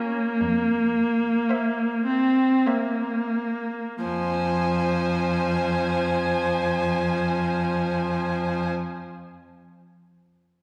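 In a slow, rubato 3/4 that moves between 42 and 62 BPM and slows down through the first 4.0 seconds, this short excerpt from a longer classical piece unfolds as a solemn, melancholic romantic movement for string quartet in F minor. Two rich violins play together from the start, one carrying the melody high between E5 and Ab5 while the other holds a second line from Bb4 to C5, both bowed with smooth, even vibrato. A clear viola sits up front with the accompaniment, and a rich, focused cello enters at 0.4 seconds on a low F, its bowed tone smooth at the top. The harmony rests on C7 over an F bass before settling onto F minor at 4.0 seconds, where the passage turns to a second section. A wet scoring-stage reverb with a 2.0-second decay places the players further back in the room, lending the quartet a spacious glow.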